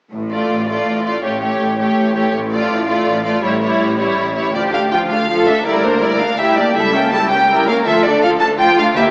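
Heard through vinyl crackle and a small-speaker tone in a wet scoring-stage reverb, this urgent, stormy classical string passage in D minor, cut from a longer piece, drives along at 163 BPM in 3/4, with an up-front, focused violin section carrying the melody high above a smooth second violin line, rich bowed violas in accompaniment, close, lush cellos and a clear double bass section in the background, while the harmony turns from Dm/A to A7 and then darkens through Em7b5/D and C#dim7 before settling on Dm around 7.9 seconds.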